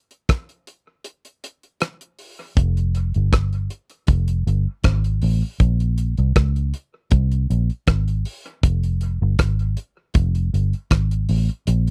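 A dry, close recording in a 1970s studio style, with little reverb, puts both instruments up front in this short dub reggae passage cut from a longer piece. The mood is spacious and deep, moving at 79 BPM in a straight 4/4. A damped acoustic drum kit opens at 0.1 seconds with hi-hat, rim click and a tight kick, its mid-forward tone giving the break a close presence, while the kick drops out between 1.1 and 2.6 seconds. At 2.6 seconds a vintage fingered electric bass enters, dark, amped and foam-muted, with a round low tone that sits between F1 and Db2. From there, drums and bass carry the groove together to the end, the bass supplying the deep weight beneath the dry, tight kit.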